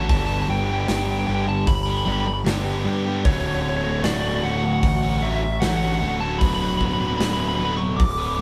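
Post-rock with a hopeful, cinematic mood, cut from a longer piece, where a slightly broken-up, compressed lead guitar carries the melody over a very quiet, breathy pad with chorus, a bright overdriven guitar with spring reverb, a dark, sludgy distorted guitar riff, a round, punchy fuzz bass up front, and a big acoustic drum kit with a boomy kick, all moving from G to Dmaj7 to Bm7/D as the band plays live in a stone room.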